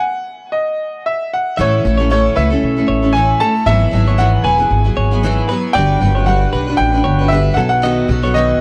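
A bright upright piano opens alone, carrying the melody high in its register with a brilliant, naturally sustaining tone during a brief stop before the band arrives at 1.6 seconds. This sunny, heartfelt acoustic pop piece moves at 115 BPM in 4/4 with a gentle 16th-note swing. At that point a picked, double-tracked steel-string acoustic guitar enters up front with a full-bodied dreadnought sound and the dull sheen of old strings, and a pizzicato upright bass joins it, growly and woody. A direct-recorded clean electric guitar plays quieter arpeggios alongside them, compressed and twangy. The harmony moves through A, Eadd9, Gmaj7 and B7. The recording has light reverb and the worn, warbly pitch drift of old cassette tape, and it is cut from a longer piece.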